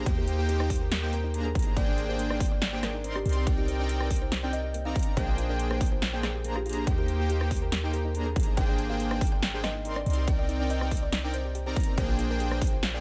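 A bittersweet, dreamy future bass passage in C minor at 141 BPM with a half-time feel opens on a boomy, deep 808-style bass, a smooth, full-bodied supersaw riff, a very quiet nasal pluck arpeggio and an airy lead arpeggio set in the background with chorus, tape echo and vintage 12-bit sampler grit, while the bass, supersaw and lead pump with the sidechain. From 0.1 seconds a punchy, up-front electronic kick and a layered dance kit with a punchy snare, rim clicks and metallic hi-hats join, and a woody kalimba melody with tape echo rings in at 0.2 seconds. The chords cycle through Eb6, Abmaj9#11, Cm9 and Bb13 in a digital ambience across this 13-second cut from a longer piece.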